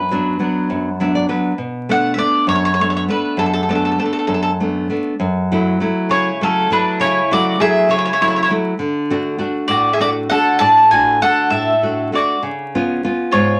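A mellow, round-toned mandolin picks the up-front melody on double strings over a bright, full-bodied fingerpicked classical nylon-string guitar, which adds a brief fill at 0.7 seconds, in this passionate, wistful Italian folk serenade excerpt at 66 BPM in a straight 6/8, moving from B minor to F# minor at 5.2 seconds. A softer, warm second mandolin line joins at 6.1 seconds, all set in a wet studio ambience with vinyl crackle.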